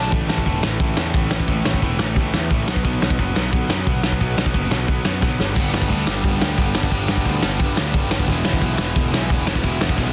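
Dry and densely limited, this upbeat, rebellious punk rock excerpt charges along at 177 BPM in a straight 4/4, moving through A5, B5, G and E. A bright, overdriven electric guitar riff drives it beside a growly fuzz bass, while a loose indie drum kit sits up front with a fat snare, punchy kick, dark cymbals and a gritty, saturated room tone. A second, mellower overdriven guitar, heard only for a split second at the start, rejoins the riff in the background at 5.6 seconds, just after a drum fill at 5.2 seconds.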